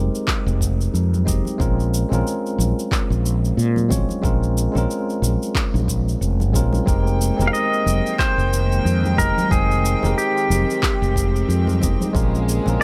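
Set at 91 BPM in 4/4 with a swung 16th-note feel, this smooth, wistful sunset chillout piece in F minor opens with a dark, round fretless bass sitting up front beneath a bell-like, clean tine electric piano with digital delay, moving between Fm11 and Bbm7. Produced cabasa and handclaps and a deep, layered electronic kick join within the first moments, and very quiet, ringing congas played with soft hands follow at 1.1 s. At 6.9 s a floating, bowed string section adds sustained chords, and at 7.5 s a pedal steel guitar takes the melody with fingerpicks, slide, volume swells and tape echo, all in light digital ambience.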